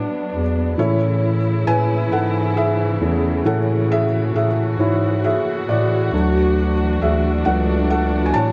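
A felt-muted upright piano opens this six-eight pop ballad in A major, its soft, mellow tone sitting up front with an intimate feel as it carries a solo over the accompaniment. From the first moment it is joined by a studio string section holding bowed, sustained chords with focused vibrato and a smooth top, and by a dark bass clarinet anchoring the low end with jazz-style scooped notes and vibrato. The mood is swaying and heartfelt, moving at a slow 45 BPM counted in dotted quarters, with the tuning set to A4 = 443 Hz. The harmony moves from B minor to A at 0.8 seconds, then settles on D at 6.1 seconds. Light reverb and small room ambience give the 8.5-second passage, cut from a longer piece, a dark, warm production.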